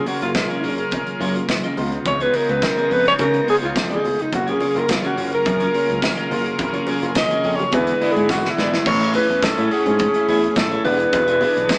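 Celebratory, danceable disco at 106 BPM in F# major, where an up-front, breathy alto saxophone with light vibrato and a smooth top plays a jazz-style solo until 8.9 seconds, over a barky, slightly out-of-tune tine electric piano, a dark, clean picked electric guitar, and a distant, reedy chamber string section holding chords in the background, while a polished studio drum kit with a punchy kick plays a fill from 8.3 to 8.9 seconds, alongside a bright, direct fingered electric bass, very quiet low-tuned congas and a jingly tambourine, moving from F#maj7 and C#7 to Amaj7 and E7 in a live-room sound with moderate reverb and a small-speaker character, cut from a longer piece.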